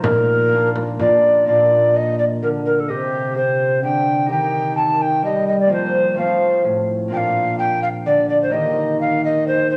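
A classical, Renaissance-style consort dance in 3/4 at 128 BPM in Bb major, festive and stately, where an airy, woody tenor recorder with gentle vibrato and a soft chiff carries the melody up front over a ringing, fingerpicked concert harp and a smooth, mellow trombone bass line, while a close, dry frame drum plays only through the opening 1.2 seconds, all set in a stone-room reverb across this short fragment of a longer piece.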